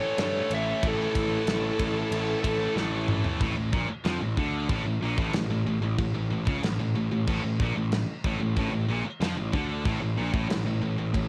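A dry, cassette-saturated home recording of dark, relentless heavy metal at 93 BPM in A major, where a high-gain lead guitar with tape echo carries a melody spanning A4 to E5 over a quieter second lead line in the background, both dark-toned and stopping at 2.7 seconds, while a bright overdriven guitar and a heavier high-gain guitar grind out a low riff, joined by a growly, punchy fuzz bass up front and a tight-kicked acoustic drum kit whose fill at 2.8 seconds leads into a chordless section from 3.4 seconds.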